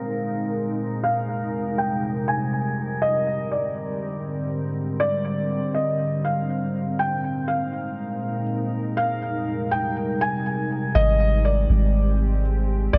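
Blissful and dreamy, this atmospheric cloud-rap excerpt at 121 BPM in a half-time 4/4 feel sets a muted, felt-softened upright piano melody with audible action noise, run through a low-pass filter and digital delay, over glassy, chorused FM pad chords moving from Bb7sus4 through Fm11 to Abmaj9#11 under a filter sweep until 11.0 seconds, when a deep, round 808-style bass arrives beneath an Abmaj7#11, all bathed in a huge ambient reverb.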